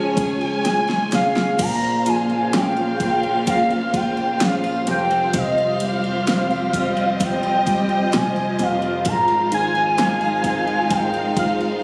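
Piano, strings and picked acoustic guitar open this tender, hopeful pop ballad at 64 BPM, joined at 0.2 seconds by an overdriven, knocking pop drum kit whose fill leads into the Bbmadd9 chord at 1.6 seconds, as a velvety, chorused synth lead carries the melody up front over deep-bassed piano, expressive bowed strings and a full-bodied dreadnought in the background, all heard through a phone-in-the-room recording with studio reverb.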